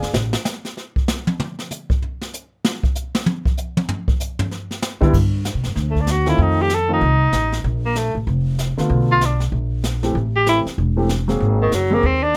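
Brushed drums open this playful, relaxed small-group swing and bop piece at 192 BPM with a solo on a kit with dark cymbals and a boomy kick; a woody, thumpy pizzicato upright bass and a polished, long-sustaining upright piano sound briefly at the very start and re-enter at 5.0 seconds, and a tenor saxophone with light vibrato and a vintage jazz tone takes the melody from 5.9 seconds over changes such as F7, Bbmaj7(no3) and Ab9, in a dry, close-sounding room.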